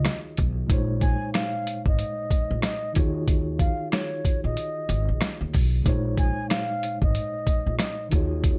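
Gritty and dark, this short boom-bap hip-hop excerpt swings on a compressed, pitched-down sampler-style drum kit sitting up front, with a thumpy kick, medium-tuned snare, rim clicks and hi-hat under a tape-warm sheen. Woody pizzicato upright bass on gut strings anchors the low end while a mellow, clean tine electric piano, given a cassette-tape character and filtering, moves between Ebm11 and Bbm11 chords. Above it, a breathy concert flute with vibrato, a crisp attack and rolled-off highs carries the expressive, filtered melody until 8.1 s, all set in light reverb.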